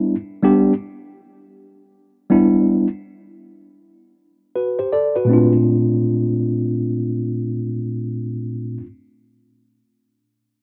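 Set at a relaxed 80 BPM in 4/4, this short hip hop fragment carries a 63% swing on the sixteenths, giving it an easy, loping feel. A mellow tine electric piano is the only part, holding down accompaniment from the start to 8.9 seconds across a range from Bb2 to D5. Its tone is worn and slightly out of tune yet clean, heard through its built-in speakers and placed up front in the mix. The harmony rests on a rootless Cmaj9 before moving to Bbmaj9 at 5.3 seconds, settling into the home key of Bb major. The dry, close sound of a 1970s-style studio leaves the piece feeling intimate, with a mood that is both warm and cool, and it is cut from a longer piece.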